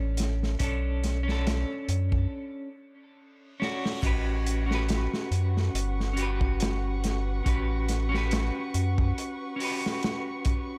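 A slow 70 BPM trip hop groove in 4/4 with a lightly swung sixteenth feel rides on a crunchy, gritty breakbeat kit with dark cymbals and a tight kick. Alongside it sit a round, deep analog bass with tube saturation and a clean electric guitar treated with tremolo and tape echo, picking over a Bm9 chord for a hypnotic, cinematic mood. A break from 2.3 seconds ends with a drum fill and a faint reverse cymbal, and at 4.0 seconds the harmony shifts to A13 as a muted, veiled chamber violin section enters with soft bowed chords and vibrato.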